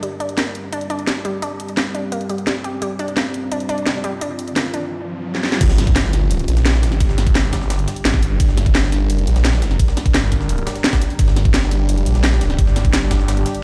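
Dark technical drum and bass at 172 BPM in G minor, this aggressive, tense passage is cut from a longer piece and rests on a single G minor chord throughout. It opens with a deep, moody pad of detuned saws and a sub octave, warbling with chorus and its own reverb, while a round, nasal analog pluck spins bright arpeggios up front, its sidechain pumping and delay giving motion until it stops at 4.9 seconds. Layered electronic drums with a cracking snare and bright hats sit close from the start, and an electronic riser climbs in the background from 4.5 seconds, topped by a drum fill just before the drop. At 5.6 seconds an impact lands and a snarling, growling saw bass takes over in the low register, distorted and compressed with a moving notch, beside a knocking layered kick and a gritty, pitched-up breakbeat kit tucked behind with filtered hats and snare. The whole thing sounds like a big system pushing into a bare room, with a large studio reverb around a light digital ambience.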